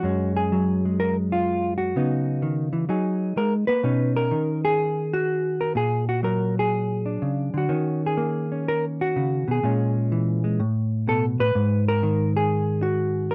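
Swung eighths at 126 BPM in 4/4, loosened by rubato, carry this smoky, moody 13.3-second solo jazz excerpt in F# major, where a dark, clean, fingered electric hollow-body guitar sits up front in a dry, close 1970s-style studio sound with light reverb, drifting through rich chords such as C#m11, Bmaj9 and A#7alt before settling on G#sus2.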